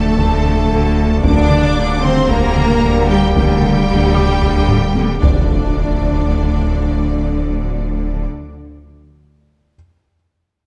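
Tense and futuristic, this excerpt from a hybrid orchestral and electronic film score moves at 113 BPM in D minor, with a distant, clear violin section carrying the melody high above a rich, close second violin line, lush bowed violas, cellos and double basses, and sustained chords from French horns and soft-attacked trombones in the background. A thick, detuned saw bass with chorus sustains beneath, while a very quiet felt-muted upright piano adds mellow texture until 5.5 seconds and a distant taiko ensemble pounds with heavy sticks from 0.2 seconds, playing a fill just before a very quiet electronic impact lands. The dark production sits in moderate scoring stage reverb, and the harmony shifts between D minor and G minor over a D bass.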